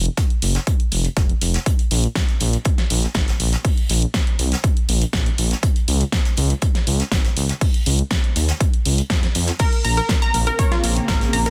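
Emotional and bittersweet, this progressive house excerpt opens on a dark, rumbling detuned saw bass pumping against a punchy, up-front electronic kick and a big-room dance kit with a huge snare, while a brushed acoustic kit with a high-tuned snare sits in the background. The harmony moves from an open start to Db at 5.6 seconds and Bbmadd9 at 9.6 seconds, where a round analog pluck enters with chorus and digital delay, joined at 10.3 seconds by a morphing wavetable pad with phaser and its own reverb. It all sits in a dense, heavily limited modern master with digital ambience.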